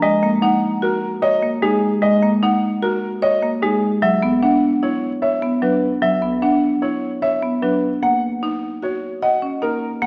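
Through a worn, warbling cassette haze and a reverberant recital hall, this bright, propulsive minimalist classical pattern piece in 5/4 at 150 BPM sets an intimate, boxy grand piano melody with audible action noise up front, over a close-miked, full hard-mallet rosewood marimba accompaniment and an airy, buzzing hardwood marimba playing arpeggios from 0.4 seconds, moving through D#m7, Bmadd9 and F# in a passage cut from a longer piece.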